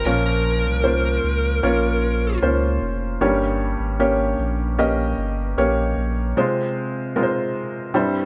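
A bluesy, overdriven electric lead guitar opens this short pop excerpt in F minor at 76 BPM, sounding a brief distorted, picked phrase on Bb4 over a felt-muted upright piano and a round, sine-like sub bass before falling away at 2.4 seconds. The intimate, mellow piano, with its soft, muted tone, short sustain and audible action noise, carries the slow, straight 4/4 accompaniment through Bbm, Gdim and Fm/C, while the deep bass holds sustained low notes until 6.3 seconds. Set up front in a small room with light reverb, the piano plays on alone until 8.3 seconds, leaving a longing, heartbroken mood.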